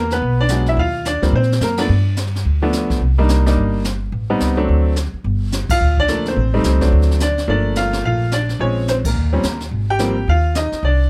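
A cool, moody jazz piano trio swings briskly at 215 BPM in G minor, with a clear, vintage-toned upright piano carrying the melody over a woody pizzicato upright bass, both set up front and heard through close, detailed microphones with little reverb. A brushed drum kit with dark cymbals, a high-tuned snare and a punchy kick sits further back, and the trio hits shared accents at 1.8, 5.7 and 9.0 seconds. The chords move through turns such as Cm7, Am7b5 and D7 before shifting to Gm9 and Bbm9 around 7.5 seconds, in this short cut from a longer piece.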